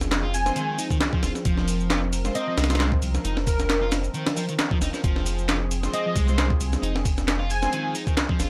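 A gritty, funky breakbeat groove at 134 BPM in F minor, swung on the sixteenths, rides a compressed, pitched-up sampler-style break with a thumpy kick and medium-tuned snare, up front beside a punchy analog drum machine adding handclaps, hi-hat and shaker, while a deep, saturated triangle sub bass holds the low end on an F minor chord. A lush, detuned sawtooth pad with chorus, phaser and sidechain pumping sustains chords beneath a sludgy, double-tracked overdriven guitar riff entering at 0.2 seconds, and an airy, dreamy sine lead with portamento, vibrato, an old-record sound and 12-bit grit carries the melody from 0.3 seconds. Smooth bowed string stabs sit in the background at 0.5 and 5.8 seconds, all in a dry, gritty hardware sound cut from a longer piece.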